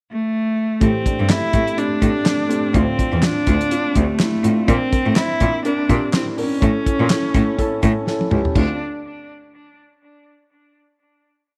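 A bowed cello opens the piece alone with a short pickup, its focused, smooth-topped tone and vibrato carrying the melody up front in song-like motifs. At 0.8 seconds this dramatic, driving piano-led pop cut in D minor settles into a swung 124 BPM pre-chorus as the rest of the band enters. A felt-muted upright piano plays soft, intimate eighth-note chords in close voicing, while a second bowed cello holds a biting, round bass line with vibrato. A dry, damped 70s-style kit sits up front with a fat snare layered with handclaps, a tight kick, dark cymbals, hi-hat, toms and crash, pushing a driving pop backbeat under a light reverb. The harmony moves through Am7, Dm7, Bbadd9 and A before a drum fill at 8.1 seconds leads to a final Dm7 chord at 8.6 seconds.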